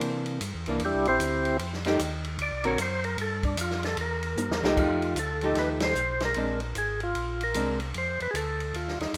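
A rough home demo mix in a small, moderately reverberant room frames this greasy, bluesy soul jazz organ trio fragment, swinging in 4/4 at 151 BPM in F mixolydian over extended dominant chords. An up-front, percussive tonewheel organ carries the melody with key click and second-harmonic percussion through a slow rotary speaker, while a mellow, round second organ with chorus vibrato holds down the bass and a dark, hollow-body archtop guitar comps with a clean, picked tone until 7.8 seconds. An acoustic jazz kit with dark cymbals, a medium-tuned snare and a boomy kick adds a fill at 4.4 seconds leading into the second section, and the band hits an accent at 5.8 seconds.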